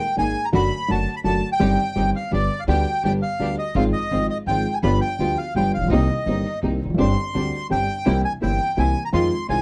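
Tense and melancholic, this tango excerpt moves in 3/4 at 168 BPM with a rubato feel, centred on C minor. A reedy, bright bandoneon carries the melody from the opening instant, sitting up front in its upper register. Entering at 0.2 s, a slightly detuned upright piano provides woody accompaniment close at hand, while a pizzicato upright bass with steel strings gives a thumpy low foundation. Behind them, a rich bowed string section with smooth vibrato delivers stabs coloured by tape echo. The harmony travels through chords such as Cm/G, Fm/Ab, G7 and Cm7 before arriving on C7 at 8.1 s, and the dry, close sound recalls a 1970s studio with little reverb.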